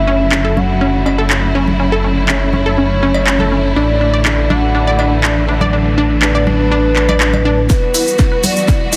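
A round, dark synth lead with chorus, phaser, cassette-tape wear and digital delay floats over clear, bowed strings and a deep, rumbling detuned saw bass, as lush detuned pluck arpeggios, a house kit with cracking snare, crisp hats and handclaps, and soft-handed congas and cowbell fill out this bittersweet, dreamy progressive house passage at 122 BPM, moving from F#m7 to Asus4 until at 7.7 s the bass stops and a punchy kick and grainy cabasa arrive with a drum fill and a filter-swept pluck build-up on Emadd9.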